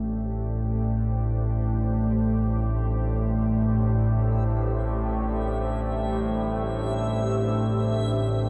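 Dark ambient drone in free time, unsettling and ominous, cut from a longer piece and steeped in a cavernous cathedral reverb with the hazy grain of cassette tape. An up-front analog drone, warbling and vintage with pulse-width modulation and chorus, holds the low end, while a deep, moody ambient pad of detuned, wave-folded, ring-modulated sawtooth fades in over it on sustained A minor chords. At 4.4 seconds a faint backwards swelling texture enters high above, a bright, granular, dreamy shimmer.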